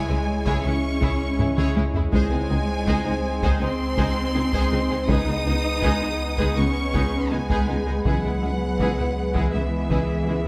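Heavy-stick taiko drums, close and dry, enter at 0.5 s with a fill at 1.4 s, anchoring this futuristic, vast hybrid orchestral and electronic film cue at 81 BPM in 4/4, moving from C#m through G#/C# and G#m/C# to E/C#. Lush, vibrato-rich violins carry a focused high melody over a second violin line, intense violas and a close cello bass. Mellow, distant French horns, a smooth-topped tuba, very quiet double basses, a round sine sub bass, a warbling lo-fi tape pad with chorus, and a very quiet squelchy, resonant pluck arpeggio fill out the sound in a moderate scoring-stage reverb.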